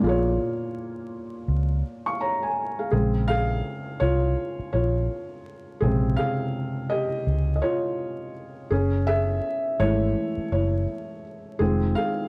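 A felt-muted upright piano and a vintage muted fingered electric bass open together at a relaxed 83 BPM in 4/4 over a Bbm7 chord, setting a nostalgic, hazy lo-fi hip hop mood. The bass sits up front with a dark, round, foam-muted tone that sounds amped, anchoring the low end. The piano is also close and intimate, soft and mellow with short sustain and a cassette-tape colour. From 2.9 s it takes a featured solo over Bbm9, moving on to Gbm9 and then Fm7. A 16th-note swing gives the groove a lazy lilt, while moderate studio reverb and vinyl crackle lend the production a dusky glow. The bass stops at 11.9 s, and the piano carries the cut to its end at 12.3 s.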